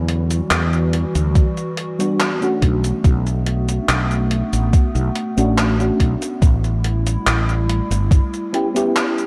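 A gated 80s digital drum machine of cabasa, handclaps and hi-hat, with its own gated reverb and grit, opens this woozy, nostalgic vaporwave excerpt at 71 BPM in B minor, joined at 1.4 seconds by a thumpy, overdriven electronic kick that sits up front. Underneath, a round, dark fretless electric bass with tube saturation and a warbling, detuned, lo-fi pad of sustained chords move through Em9, Bm9 and A7, while a soft, full-bodied FM electric piano arrives at 2.0 seconds with phaser, ensemble chorus and tape echo. The whole has a cassette-tape character with light reverb and is tuned slightly sharp at A4 = 443 Hz.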